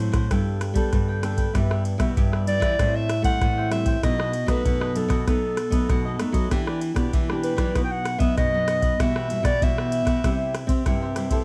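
A playful, joyful blend of samba and choro in E minor at 97 BPM, this short excerpt opens with a crisp, picked cavaquinho and two fingerpicked nylon-string guitars, one playing the harmony up front and the other carrying the bass line. An analog drum machine joins at 0.1 seconds with a deep, tape-warm kick, ride cymbal and rim click sitting forward in the mix, giving the acoustic strings an electronic pulse. At 2.5 seconds a clarinet enters as the solo melody, present and classical in style, bathed in plate reverb and sitting between A4 and G5. The harmony moves through Gadd9, Em/G, Am7 and B7 before settling toward Em7, B, Emadd9/B and C, keeping the minor key in focus. The overall production is dark and lightly reverberant, with the clarinet stopping at 10.9 seconds just before the piece cuts off.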